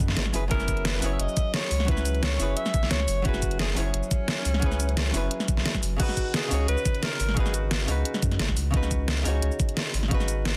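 From the first moment, a saturated sub bass, a hollow-body jazz guitar and an overdriven electronic kick drum open this uplifting, dreamy liquid drum and bass cut at 175 BPM, joined at 0.1 seconds by a pop drum kit of cabasa, crash cymbal, hi-hat and deep snare. The kick knocks, and the kit sits up front, both layered and overdriven with the character of a small room. Beneath them the sub bass is deep, thick and triangle-shaped, with a fast attack and long sustain. The guitar plays clean, dark, compressed picked accompaniment through a delay. At 0.5 seconds a clear alto saxophone takes the solo melody with jazz-style vibrato and dub echo, running until 8.1 seconds over harmony that moves from Gb9sus4 to Db9sus4 at 6.0 seconds. The mix carries light reverb under a dense, heavily limited modern master.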